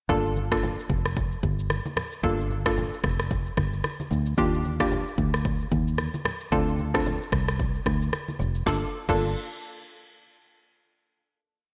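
Afrobeats at 112 BPM in G minor, this short, complete piece has a mellow, sultry mood and a lightly swung sixteenth-note groove, all bathed in a dreamy plate reverb. A hollow square-wave pluck sits up front with syncopated chords, its detuned, ring-modulated tone given a fast attack, a decaying tail and a chorus shimmer. Beneath it, a fingered electric bass plays a bouncy, syncopated line with a dark, round, foam-muted sound. The electronic afro-pop kit pairs a deep, soft kick and woody snare with syncopated rim clicks, shaker and crash cymbal, while very quiet, close and dry congas add interlocking hand patterns with a thin-skinned brightness. The verse moves from Gm7 through Ebmaj9 and Dm7, and at 8.7 seconds the piece settles onto a final Gm7 chord that rings out to the close.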